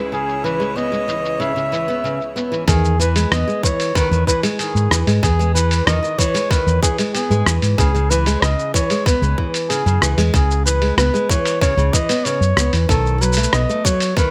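A smooth, warm flugelhorn carries the melody with jazz-style vibrato and digital delay over woody, fingerpicked acoustic guitar arpeggios, also delayed, in this hopeful, delicate folktronica excerpt at 94 BPM in E major, where a bright, airy string quartet holds close chamber chords until 2.7 seconds, when a round, punchy hollow-body electric bass and a tight, tape-warm electronic kick enter alongside a muffled, pitched-down, sampler-style kit of cabasa, hi-hat and rim click, all in light reverb.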